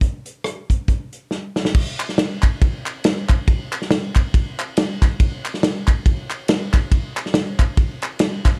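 A dark production with light reverb frames this uplifting, soulful gospel clip, cut from a longer piece, where a swung acoustic soul drum kit plays alone at first, its tight kick, medium-tuned snare, rim clicks, hi-hat, ride and crash heard in a small, roomy space with a rolled-off top. A drum fill at 1.3 seconds leads into the next section, and from 2.0 seconds a crisp, close group handclap joins the kit, sitting beneath it in the mix.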